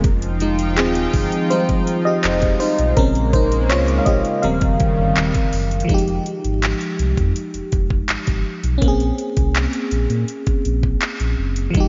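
Late-night and sensual, this contemporary R&B excerpt in F minor moves at 82 BPM, with a glassy, bell-like FM electric piano soloing up front over Fm9, Bbm9 and Eb13 chords while a shimmering, nasal pulse-width pad with sidechain pumping holds sustained chords until 5.9 seconds, a deep sine sub bass anchors the low end, and an electronic drum kit of knocking kick, metallic hi-hats and handclaps sits up front in a dreamy, reverb-soaked hall mix dusted with vinyl crackle.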